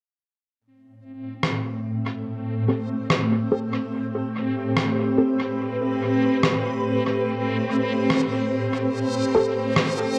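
Ambient dub at a relaxed 72 BPM in 4/4, with a gentle 16th-note swing, this excerpt from a longer piece sits in A minor on a single Am7 chord and feels spacious and deep. A bright, reversed swelling texture with a dreamy, detuned character appears first at 1.1 seconds, and a cloudy granular pad soon follows with full-bodied sustained chords that blur and evolve under its own built-in reverb. Up front, an electronic rim click has a sampler-style, muffled, tape-warm tone, compressed and re-recorded in a large room, and it is trailed by dub echo. From 2.7 seconds a muted, detuned chord stab with a plucked filter shape and lush chorus sits in the background, carrying dub echo and a filter sweep. Light reverb and digital ambience give the echo-heavy mix its airy depth.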